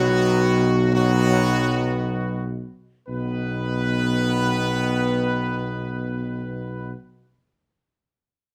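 A mellow tuba sits up front on a low B beneath a clear trumpet section carrying the melody, with a vintage-toned trombone section and smooth-topped French horns sustaining chords, the horns in the background, all with light vibrato, in this brief, regal and triumphant classical fanfare cut from a longer piece, in 3/4 and B major at 52-64 BPM, slowing over the first 3.1 seconds and set in light reverb.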